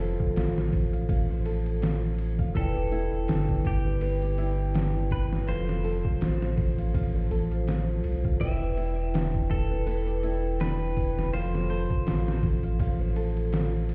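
Heard muffled as if through a wall, with stone-room reverb and vinyl crackle, this brooding, dark trip hop excerpt moves at 82 BPM with a swung 16th feel, alternating between F and Em7. Up front, a compressed, pitched-down sampler-style kit gives a thumpy kick, medium-tuned snare and ride cymbal alongside a deep, round sine sub bass with tube saturation, while a ringing, metallic vibraphone with harmonic tremolo sits mid-forward and a fingerpicked flamenco guitar arpeggiates in the background through tape echo, its finger squeaks audible. From 2.6 seconds a bright, twangy clean electric guitar picks out a compressed melody, also treated with tape echo.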